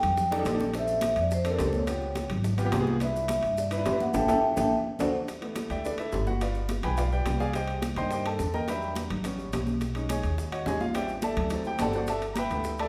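A reverberant recital-hall sound frames this sunny, danceable Afro-Cuban jazz passage, cut from a longer piece and recorded in a church or concert hall. It moves at a brisk 212 BPM in a straight 4/4, centred on G major, with harmony that drifts through lush extended chords such as F13, Bbmaj9 and C#7#11. A mellow, metallic vibraphone played with soft mallets carries the melody until 5.1 seconds. A woody, growly pizzicato upright bass sits up front throughout. A smooth, vintage grand piano comps from 0.3 seconds and then takes a solo from 5.3 seconds to the close. Close, dry percussion drives the groove: high-tuned congas struck with hard hands in the background, very quiet round low-tuned bongos, metal-shelled timbales, and grainy maracas set in a live room, with drum fills and a full-band accent leading into the piano solo.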